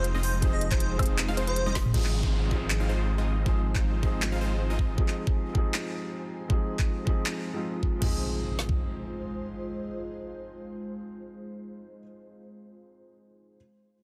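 Euphoric and lush, this future bass excerpt moves at 158 BPM in a half-time feel with a light swing, set in Ab major. It opens on a drop over Fm7, where an airy, dreamy lead with chorus and tape echo carries a short melody alongside a very quiet, detuned sawtooth pluck playing arpeggios. Both give way at around 1.9 seconds as the harmony shifts to Ab6. Beneath them, a punchy supersaw stab plays a riff through digital delay. A deep, mellow 808-style bass with tube saturation sits up front, and both pump with sidechain until 5.0 seconds. A soft, felt-muted upright piano with an intimate, thin felt tone plays accompaniment through 13.6 seconds. An ethereal pad with ensemble chorus and built-in reverb holds sustained chords in the background. Two layers of trap drums drive the groove: one brings a kick and a woody snare, and the other adds its own woody snare along with hi-hats, finger snaps, handclaps, woodblock, toms and cymbals, with a fill at 1.7 seconds. 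Electronic downlifters and impacts mark the section changes, and the dense, heavily limited master has a light reverb.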